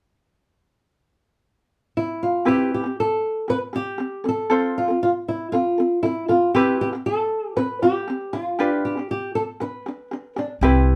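A thumb-plucked flamenco guitar carries the heartfelt melody up front from 2.0 s, finger squeaks and all, while a light, fingerpicked ukulele joins at 2.5 s to accompany over Cmaj7, F and G7 chords in this easy-going acoustic pop excerpt, played live in one room with moderate studio ambience, before a dark, woody pizzicato upright bass on steel strings enters at 10.6 s.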